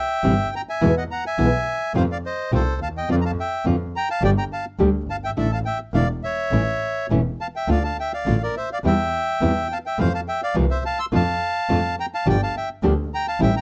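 In a rubato 4/4 pulse around 105 BPM, this melancholic, passionate tango excerpt sets a reedy, bright, close-miked bandoneon melody up front over a dark, fingerpicked nylon-string guitar with audible finger squeak and a clear, focused bowed double bass singing with vibrato, all within a dark production touched by light reverb.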